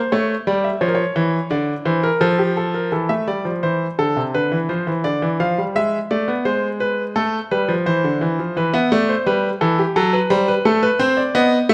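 Set in a moderate recital hall with a 1.8-second reverb, this short, driving and serious passage from a baroque-style two-part invention in A minor at 86 BPM features a solo concert grand piano that sounds clear, intimate and polished, with deep bass, long sustain, audible action noise and an up-front presence, moving through harmonies such as A7, Dm, E7/G# and Em before it breaks off on F#dim at 10.0 seconds.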